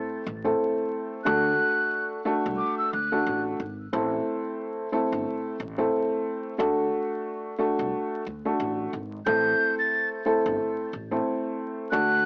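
Boom-bap hip-hop with a moody, reflective air, this short cut rides a swung groove in 4/4 over a chord pattern moving between Am and D. A dark upright piano carries the accompaniment throughout, its boxy, woody tone sitting up front with long sustain and filtered at both ends of the spectrum. Beneath it, a pizzicato upright bass with steel strings adds a growly, low foundation, mixed well back. A breathy silver concert flute takes the melody high above, first from 1.2 to 3.4 seconds and again from 9.3 seconds to the close, its hollow, close-miked sound marked by vibrato, a crisp attack, filtering and tape echo. The whole piece has a gritty, dry hardware character with vinyl crackle, a small-speaker sound and a touch of small-room reverb.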